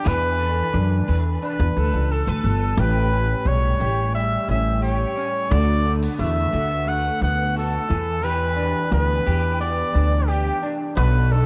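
A clear, close-miked trumpet opens this wistful, mellow indie pop fragment, singing the melody with light vibrato through lush chorus and tape echo, while a twangy, fingered electric guitar at the edge of break-up accompanies it, its ensemble chorus and warbly pitch drift giving it a worn cassette-tape colour. From 0.1 s, a woody upright bass on gut strings enters, plucked and thumpy and sitting up front, as the harmony moves from E7sus4 through A7 and D6 to Em7. The light reverb and home cassette recording lend the piece an intimate, lo-fi character.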